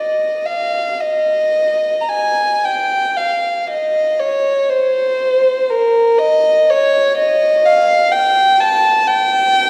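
Set in a wet concert hall with a 2.2-second reverb tail and heard from further back in the room, this serene, lyrical classical passage cut from a longer piece features a single unaccompanied violin across its 9.7 seconds. The solo line moves freely in 4/4 at around 53-63 BPM with expressive rubato, tuned to A4 = 436 Hz. The violin's dark, intimate tone, played sul tasto with a soft attack, light vibrato and a smooth top, sits up front between Bb4 and Bb5.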